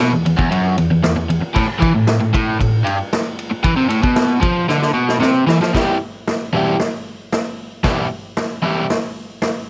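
A bright, overdriven electric guitar opens the cut with a gritty, double-tracked riff moving from E5 to A5, and a vintage acoustic drum kit joins at 0.3 seconds with a punchy kick, a medium-tuned snare and dark, rolled-off cymbals. This is menacing garage rock in a straight four, with a drum fill from 4.7 seconds leading into a new section on E minor. The guitar sits up front in a moderate studio reverb over a faint mains hum before it stops at 8.9 seconds, and the drums play on briefly until 9.5 seconds, just before the clip cuts off.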